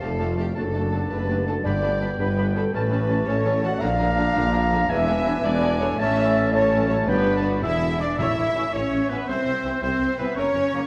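Adventurous and heroic, this cinematic film-score passage moves at 110 BPM in a straight 6/8, set in G lydian and cut from a longer piece. A lush violin section with a soft attack and expressive vibrato carries the melody, while a bright oboe, a very quiet clarinet, a hollow flute ensemble with rolled-off highs and a second, focused violin section weave supporting lines alongside it. A distant viola section fills in the accompaniment, and a punchy, tight French horn section, the most prominent voice, holds sustained chords over a vintage-toned trombone section. A clear, roomy trumpet adds stabs, and the bass is anchored by a tuba, a double bass section and a cello section sitting in the background. Timpani struck with hard mallets on calf heads appear only briefly, at 1.7 seconds and again from 7.1 to 8.7 seconds. The harmony wanders through chords such as Bb, E7 and A before shifting into a new section at 8.2 seconds, and the whole ensemble sits in a wet scoring-stage reverb.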